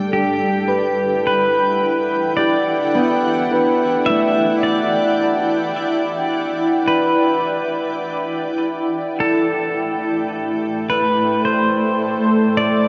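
Ambient music at a slow 53 BPM in E minor, serene and melancholic, where a cloudy, evolving granular pad sustains blurred chords up front while a clean, compressed pedal steel guitar sings a slide melody with volume swells and delay, and a ringing, fingerpicked concert harp adds delayed arpeggios until 9.8 s, all drifting from Em7 to Am7 at 9.2 s inside a vast, echoing cathedral space with a dark, softened top end.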